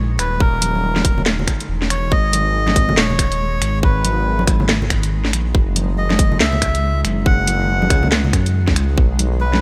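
Dark and brooding, this deep dubstep passage is cut from a longer piece and moves with a half-time, swung feel in 4/4. A deep, rumbling detuned saw bass sits up front from the start, its beating unison tone anchoring the low end, while a granular cloud pad holds blurred, evolving sustained chords in the background with its own built-in reverb and a subtle chorus. A reedy, breathy melodica carries the melody through a dub echo, its nasal, mellow voice entering at 0.2 seconds. The garage drum kit arrives at the same moment with finger snaps, hi-hat and a cracking snare, joined by a tight electronic kick at 0.4 seconds, while bright, distant congas sit in the background in a large room. The harmony moves through D#5, G#5, F#5 and B chords, and the mix carries a bright 1980s-style digital sheen with light reverb and digital ambience.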